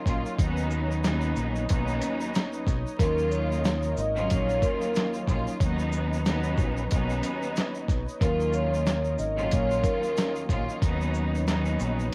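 Dark and moody, this boom-bap hip-hop excerpt rides a swung 92 BPM groove in 4/4, cut from a longer piece and steeped in the sound of a home cassette recording and vinyl crackle in a small room with light reverb. A dusty, sampler-style drum kit sits up front with a thumpy kick, a medium-tuned snare, hi-hat and shaker, all gritty and compressed, while a round, dark fingered electric bass holds down the low end alongside it. A clear, focused studio string section bows with vibrato as accompaniment, and a smooth, detuned sawtooth pad with chorus sustains chords in the background. A grainy, bright tube shaker adds a faint vintage texture from 0.3 seconds. The vibraphone, played with soft mallets and motor off, carries a mellow, ringing melody with tape echo from 3.0 to 10.3 seconds as the harmony moves between Badd9 and Ebm7.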